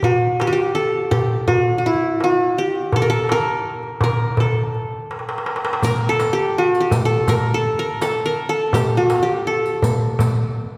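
Passionate Turkish makam ensemble music in a short excerpt, with an up-front, fingerpicked qanun carrying the melody over a crisp, vintage metal-shell darbuka struck with hard hands, which plays a fill at 5.1 s before a softly played riq with bright jingles joins at 5.8 s, all set in a wet concert-hall reverb that places the listener further back in the room.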